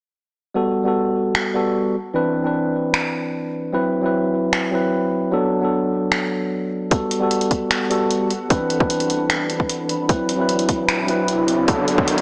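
A half-time 4/4 groove at 151 BPM drives this lush, playful future bass excerpt in G major, with a layered dubstep drum kit of finger snaps and hi-hat arriving at 1.3 seconds, re-recorded in a large room, and a hard-clipped electronic kick joining up front at 6.9 seconds. A clean tine electric piano played through a combo amp pumps with the sidechain over chords such as Gmaj9, Cmaj9 and D13, while a shimmering, ethereal pad with octave-up shimmer, detuned unison and a granular texture enters in the background at 7.9 seconds, dark and chorused. An electronic riser closes the clip, and the mix sits in a moderate hall reverb with a small-speaker character.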